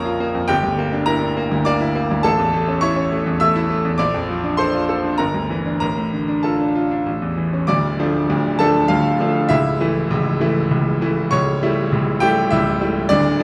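Passionate and agitated, this brief cut from a longer classical virtuoso piano study unfolds in a rubato triple metre, with a bright grand piano playing solo across a range from C#1 to E6. The piano sounds brilliant, smooth and vintage, sitting up front with long sustain, while a wet recital hall reverb surrounds it. The harmony moves through Em7b5/G, A and Bbmaj7 before a second section opens on Dm at 7.7 seconds and closes on A7/C#.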